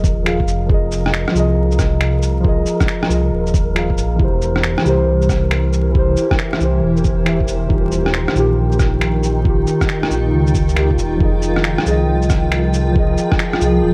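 The dark, detuned saw bass rumbles up front with sidechain pumping beneath muted felt-like synth keys touched with chorus and tape echo, while a muffled, thumpy sampler kick and gritty shaker, finger snaps and rim click swing through this wistful, nocturnal future garage piece at 137 BPM in F minor, an airy wind-like noise texture breathes in the background, a bright granular cloud pad blooms in at 5.7 seconds, and vinyl crackle and light reverb frame the cut from a longer piece.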